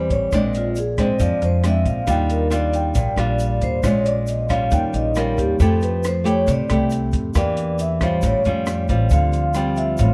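Dry and dark, with little reverb, this short excerpt of sophisticated, breezy bossa nova sits close and intimate. A vibraphone played with medium mallets carries the melody as a solo throughout, its metallic, ringing tone colored by a slow motor vibrato. Up front, a fingerpicked classical nylon-string guitar supplies the accompaniment, while a woody upright bass with steel strings plays pizzicato underneath. A compact cocktail drum kit with a tight kick, rim click and hi-hat has a smooth, rolled-off character, and a grainy, bright egg shaker sits in the background from 0.1 seconds. The harmony moves through rich chords such as Bb9, Ebmaj9 and Fmaj9 before Em7b5 and A7alt lead to Dm7 at 9.1 seconds, where a clear brass ensemble enters in the background with sustained chords.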